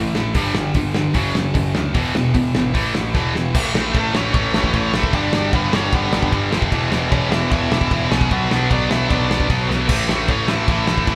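Punk rock at 151 BPM in 4/4 with a straight, upbeat and rebellious feel, this short cut from a longer piece sits in A major, tuned slightly sharp to A4 = 445 Hz. Two picked, double-tracked distorted guitars drive the riff from the first second: a bright, tight one up front and a high-gain one set back in the mix, both ranging from E2 to B3. A growling, punchy picked bass with overdrive anchors the low end, while a loose acoustic indie kit with a medium-tuned snare and tight kick sits up front, throwing a fill from 3.1 to 3.5 seconds and another at 9.7. At 4.0 seconds a dark, nasal lead guitar with a parked wah and overdrive enters with a melody spanning A3 to G#5, over a progression that moves through A, G, E5 and Bm. The band sounds like it is playing live together in one room, lightly touched by reverb.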